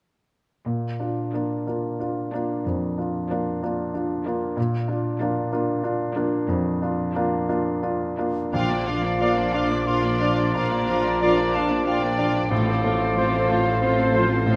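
A clear, polished baby grand piano sits up front and carries the melody in this lyrical, passionate classical passage, cut from a longer piece in Bb major at a slow 61 BPM in 12/8, with uneven beats and a rubato feel. From 0.7 seconds a very quiet cello section holds the bass beneath it, and a viola section soon adds lush, bowed accompaniment in the background. At 8.5 seconds the full orchestra enters. A violin section with a smooth top takes up the melody over a distant second violin line, a pure, softly attacked silver flute, a bright oboe and a mellow, very quiet clarinet. Underneath, a vintage-toned bassoon adds accompaniment, while a very quiet tuba and a distant double bass section deepen the bass, and hard-mallet timpani sound a brief, dry, articulate note. From 9.2 seconds a dark, loose French horn section holds sustained chords and a very quiet trumpet adds stabs, with the whole orchestra set in a moderate scoring-stage reverb.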